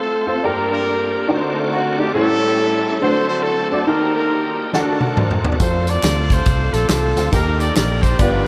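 A punchy, tight horn section carries the melody up front with light vibrato and tape echo, over full, shouting tonewheel organ chords turning on a slow rotary speaker and a warm grand piano accompaniment, as the chords move from Gm through D7b9 and A7 toward Eb. This soulful, fervent uptempo gospel fragment swings at 139 BPM. A natural country drum kit with a punchy kick breaks in with a fill at 4.7 seconds, and a round, amped fingered electric bass joins at 5.6 seconds with tambourine and handclaps sitting in the background, all inside a huge ambient reverb that soaks the mix in a dreamy wash.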